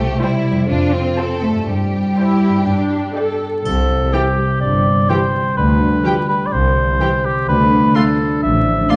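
Dark and vinyl-crackled in a moderate scoring-stage reverb, this excerpt of a playful, whimsical film cue has a lush violin section carrying the melody over ringing, thumb-plucked concert harp arpeggios, with a focused cello section and smooth double bass section holding the bass, a close viola section in accompaniment and a distant second violin line in the background, before a solo oboe steps up front at 3.7 s with its own line and a triangle adds a brief accent from 3.7 to 4.6 s, lending the music a mischievous, magical air.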